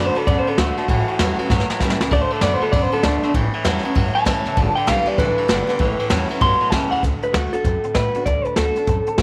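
Rowdy and upbeat, this swinging rockabilly snippet carries a compressed, slightly broken-up, lo-fi electric guitar melody through tape echo, over a bright picked steel-string acoustic with audible finger squeak, a clean twangy electric riff, and a woody, thumpy pizzicato upright bass on gut strings, while a dark, smooth, up-front brush kit with a boomy kick joins at 0.2 s and plays a fill from 1.5 to 2.1 s, all set in light studio reverb.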